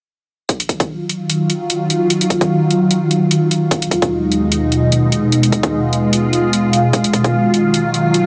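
Punchy, layered electronic kick and bright hi-hats open this heavy, chaotic wobble dubstep excerpt at 149 BPM in Eb minor with a swung half-time feel, joined at 0.8 s by an evolving, detuned wavetable pad of morphing ring-modulated sustained chords moving from Ebmadd9 through Abm/Eb and Fdim, its chorus, phaser, sidechain pumping and filter sweep drifting through a dreamy, reverb-soaked space.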